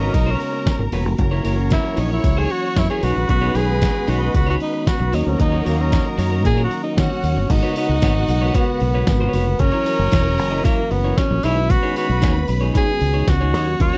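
A dry, close 1970s-style studio sound frames this driving, glamorous disco passage in G# minor, moving at 114 BPM in a straight 4/4 and cut from a longer piece. A breathy, whispered tenor saxophone sits up front with a soft attack and light vibrato, playing an intimate solo for the first 7.5 seconds before carrying the melody on. Beneath it, a growly, punchy fingered electric bass and a gritty, compressed, pitched-down, sampler-style drum kit with a thumpy kick, medium-tuned snare, hi-hat and crash form the foundation, with a jingly tambourine far back in the mix. A picked electric guitar at the edge of break-up adds accompaniment through a spring reverb, while a mellow, flute-like tonewheel organ holds chords in the background with key click, chorus vibrato and a fast rotary speaker. A focused, distant bowed string section traces a second line above, and a clear horn section adds punchy stabs with octave doubling until 7.2 seconds. 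The harmony cycles through G#m11, F#7, B69 and D#m7.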